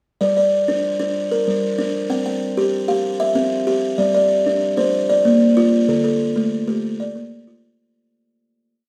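A buzzing kalimba opens this short southern African traditional piece at 0.2 seconds, playing alone in a hypnotic, trance-like interlocking cycle in the manner of mbira music. Its plucked tones are woody and mellow, with an airy ring and a rattling buzz that sits up front in the sound. The ostinato moves in 12/8 with a straight feel, and its harmony turns from G minor to C, then through Bb and D before settling back on Bb. A moderate small-room reverb gives the instrument a sense of close space. The cycle fades out from 5.9 seconds, ending at 7.8 seconds.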